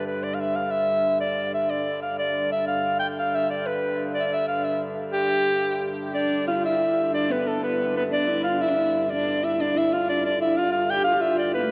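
Heard through a worn, warbling cassette with drifting pitch and a wet cathedral reverb, this excerpt from a longer medieval dance in G mixolydian moves at 122 BPM in a straight 6/8, rustic and ancient in mood. A clear soprano saxophone carries the melody up front in a classical style with vibrato and a slapback echo, over a dark, distant hurdy-gurdy drone that sounds throughout. At 6.1 seconds a woody, biting viola da gamba joins with a ringing, lightly vibrato second line as the opening phrase repeats.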